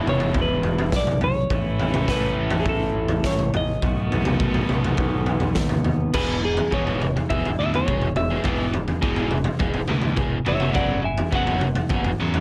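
Indie rock with a carefree, upbeat drive, this excerpt sets a clean, fingered semi-hollow guitar melody over a scooped, overdriven electric guitar riff and a background overdriven semi-hollow riff touched with subtle chorus, while a growling, bright fingered bass sits low in the mix and an up-front, gritty garage drum kit with a pumping small-room sound, dark cymbals and a punchy kick drives the track beneath light reverb, with a clean electric guitar solo entering at 6.1 seconds.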